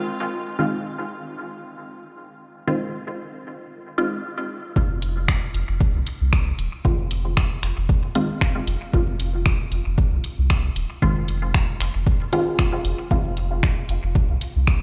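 Cavernous, hazy dub techno at 115 BPM in F minor, where a muted, detuned Fm7 chord stab with phaser, dub echo and sidechain pumping plays alone before a round sine sub bass and a punchy electronic kick enter at 4.8 seconds, a tape-warm analog drum machine of finger snaps and hi-hat with dub echo follows at 5.0 seconds, and the stabs drop out at 13.4 seconds, all set in a stone room reverb as if played on a big sound system in a bare room.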